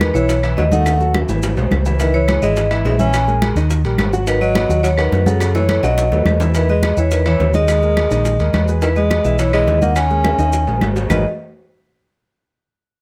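Driving and sultry, this Afro-Cuban jazz passage, cut from a longer piece, moves at a brisk 211 BPM in 4/4 with a straight feel in G# minor, tuned slightly flat to A4 = 437 Hz. A vibraphone played with medium hard mallets and its motor off carries the melody with a metallic ring in a boxy small room, while a breathy tenor saxophone with scooped notes traces a second line beneath it. A baby grand piano supplies intimate, natural accompaniment with audible action noise. Up front, a fingered hollow-body short-scale electric bass anchors the bottom with a dark, round, amped tone. Behind them sit brilliant congas, compressed and saturated low-tuned bongos, metal-shell timbales resonating in a distant large room, woody claves and grainy maracas, with drum fills around 0.9, 5.4 and 10.2 seconds. The harmony moves through colors such as Emaj7, C#madd9 and A#m7b5 before settling on G#m9, and the close, detailed recording keeps reverb to a minimum.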